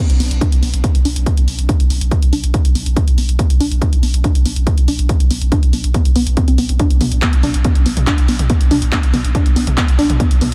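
A saturated sub bass and a punchy, dry analog drum machine of handclaps, hi-hat and toms open this excerpt of driving peak-time techno at 0.1 s, running at 141 BPM in a straight 4/4 in B minor. The deep, thick sub bass sits in the background on B1, its sustained notes shaped by a low-pass filter and sidechain pumping. A warbly, dusty pluck joins almost at once, playing a riff between B3 and D4 with a detuned, lo-fi, vintage character, a noise layer, short decay, and chorus, overdrive, delay and sidechain pumping on top. From 0.4 s a heavy, layered electronic kick drum takes the front of the mix, its tape-warm thump re-recorded in a small room. Light reverb frames a relentless, dark mood that holds steady through the whole clip.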